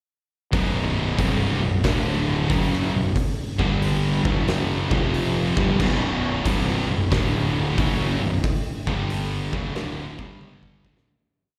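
Stoner and doom metal at 91 BPM in 4/4 with a swung feel, brooding and sludgy, where an oversized low-tuned drum kit with a boomy kick, fat snare and dark cymbals sits up front in a half-time groove, while two thick fuzz guitars, one dark and very quiet and one with distortion and slapback echo, join a bright, double-tracked overdriven electric guitar and a growly fuzz fingered bass doubling the power-chord riff over chords centred on B5, D5 and G5, all heard as a live gig through the venue's PA in a recital hall, with a fade-out from 8.4 seconds and a drum fill closing at 11.1 seconds.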